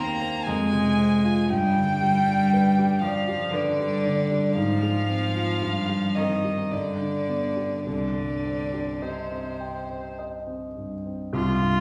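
Solemn and melancholic, this rubato passage from a slow romantic piano-trio movement in 3/4 features a rich, intimate, airy-bowed violin melody played sul tasto with light vibrato until 10.2 seconds, set over a nasal, floating cello second line and a dark, mellow baby grand piano accompaniment with long sustain, with the close strings and the piano all up front in a recital-hall reverb heard from further back in the room as the harmony moves through Fm and G to settle on Cm at 7.9 seconds.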